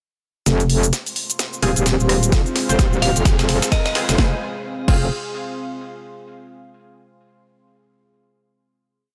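Bouncy and swaggering, this short bass house piece in F minor runs at 129 BPM with a 16th-note swing, building from 0.5 seconds to 4.2 seconds before settling on a final chord. A metallic, aggressive FM wobble bass sits up front from the start, saturated and compressed with chorus and overdrive, its modulated phrases changing wobble speed and pumping against the sidechain. The house drum kit brings a cracking snare, rim, shaker, open and closed hats and crash, tape-warm and re-recorded in a large room, while a punchy electronic kick joins at 2.3 seconds with a four-on-the-floor pulse. Behind them, a dark analog pad with phaser and 12-bit sampler grit holds sustained chords, a deep, warbling ambient pad shifts slowly through reverb until 6.0 seconds, and a background riser carries the build. Bold, detuned orchestra-hit-like stabs echo sparsely through digital delay, and a glassy, crystalline FM bell with tremolo adds short phrases between 3.0 and 3.9 seconds, all under a light reverb.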